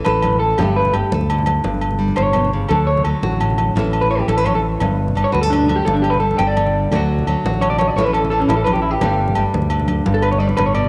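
This home cassette recording has a light reverb and a small-room ambience, and the short clip is cut from a longer highlife guitar-band piece with a carefree, warm mood. It moves at 114 BPM in a straight 12/8, slightly sharp of standard pitch at A4 = 441 Hz, and cycles through A, Gsus2 and D. Up front, an electric guitar through a small old amp plays arpeggios as a solo line across the whole clip, sounding warm, slightly broken-up and compressed, with a tape echo and cassette-tape grain. Beneath it, a bright, full-bodied nylon-string guitar fingerpicks classical-style accompaniment, also carrying a cassette-tape colour, while a fingered electric bass sits direct and amped near the front. Agogo bells ring close and dry from the very start. Medium-tuned congas played with soft hands stay in the background.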